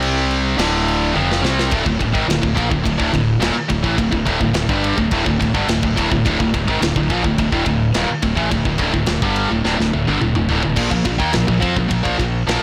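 Heavy metal at 106 BPM in D phrygian, relentless and epic, this short cut opens in half time, with a bright, double-tracked high-gain guitar riff driving up front from the start over growly fuzz bass and a tight studio drum kit with bright cymbals and a soft-clipped kick. A drum fill at 1.2 seconds leads out of the half-time opening, and the harmony moves from C5 and Dm to D5 and later Bb5 after another fill at 9.6 seconds, all in a dry, blown-out, overdriven recording.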